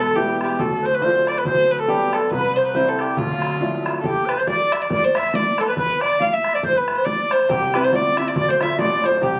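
Wild and driving, this Celtic polka bounds along at 139 BPM in 2/4 with a swung eighth-note feel, set in D dorian and cut from a longer piece. A single rich, smooth fiddle carries the melody up front, bowed close with light vibrato and an even tone. A bright baroque flute traces a second line in the same register, its wooden, airy sound tongued with a straight tone. An intimate grand piano supplies the accompaniment, its action noise audible; it drops out at 4.0 seconds when the harmony falls away and returns at 7.5 seconds. A damped, tight bodhran sits distant in a large room beneath them, and the whole recording carries a moderate club reverb and the crackle of a very old 78 rpm record.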